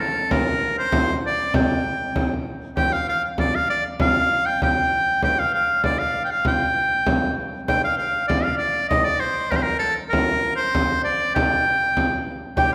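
A bright, folk-style shawm leads this driving, ancient-feeling medieval dance in G minor, carrying the solo melody up front between A4 and G5 at 98 BPM in a straight 2/4, with its opening phrase repeated from 7.7 seconds. A deep, large frame drum played with hard hands sits close in the mix yet carries a distant, roomy character, while a shimmering, ringing hammered dulcimer touches a single G4 only at 12.6 seconds. The whole cut-off passage is bathed in the wet reverb of a church or concert hall, with a 1.8-second decay.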